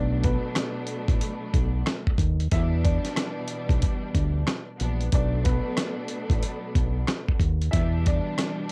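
Boom-bap hip-hop in E minor at 92 BPM, this short excerpt from a longer piece has a dark, gritty mood and a swung 16th-note feel in 4/4. A dark upright piano carries the melody, its worn, woody tone slightly detuned, with audible action noise, long sustain and a touch of tape echo. Beneath it, a bright studio string section plays lush, bowed accompaniment with intense vibrato, given a cassette-tape color. A fingered electric bass sits up front with a round, tube-saturated tone, while a dusty sampler-style drum kit enters at 0.2 seconds with a thumpy kick, medium-tuned snare, rim click and hi-hat, compressed and re-recorded in a small room. The chords move between Bm7 and Em7, and the whole home-recorded cassette sound stays dry, with little reverb.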